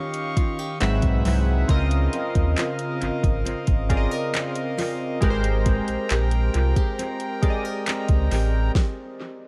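Longing and moody, this brief cut of slow contemporary R&B at 68 BPM drifts from Eb9 through Ab7alt and Dbmaj13 to Abmaj9 as detuned analog keys with ring modulation, chorus and dub echo, thick sustained pipe-organ chords pumping under sidechain, and bright fingerpicked nylon-string guitar arpeggios with audible finger squeak float over an up-front electronic kit of soft kick, fat snare, dark hats and handclaps roughened by 12-bit sampler grit, while a deep sine sub bass with octave enters at 0.8 s, all in a dry yet echo-heavy mix that halts into a stop at 8.8 s.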